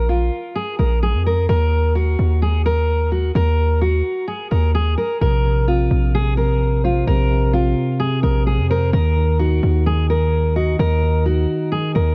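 A hard-hitting, dark trap piece with a half-time hip hop feel at 129 BPM, heard in a short cut from a longer work and set in a studio ambience. A fingerpicked steel-string acoustic guitar carries the melody up front from the start, its full-bodied dreadnought tone softened by a low-pass filter and trailed by digital delay. Underneath, a hard-hitting 808-style bass sits heavy and punchy, its sine body topped by a noise layer with a fast attack that decays after each hit. At 5.2 seconds a mellow tine electric piano joins as accompaniment, clean and direct, with a low-pass filter rounding its warm tone. The harmony moves from Bb5 to Ebm, then through Bbsus2 back to Ebm, keeping the mood brooding throughout the 12.1 seconds.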